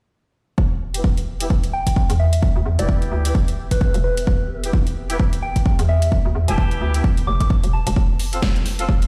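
Gritty and bouncy, this bass house excerpt at 130 BPM in E phrygian swings its 16ths over a punchy, tape-warm kick and a hollow, knocking FM bass with tube saturation and sidechain pumping, while a big-room kit adds a huge snare and metallic hats, a distant horn section stabs through a low-pass filter sweep and delay, a soft, pure synth bell carries the melody with chorus and phaser, and a cloudy granular pad fades in behind from 1.8 seconds, all heard as if played on a big sound system in a bare stone room, moving from Em to F at 8.0 seconds.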